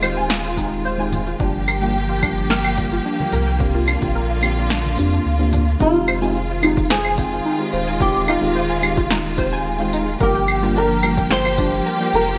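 A straight 4/4 groove at 109 BPM in F dorian drives this relaxed, smooth sunset chillout excerpt, where a punchy, up-front deep house kit of claves, shaker, snare and smooth hats is joined by an electronic kick from 0.6 s, very quiet low-tuned congas, a deep sine sub bass, lush bowed strings, a dark FM electric piano with chorus, phaser and delay, and a detuned, gritty arpeggiated pluck over Fm7, Gm7 and C9sus4, before a thumb-plucked flamenco guitar takes the melody at 5.8 s over Fm7 and Gm7 in a bright 1980s-style hall.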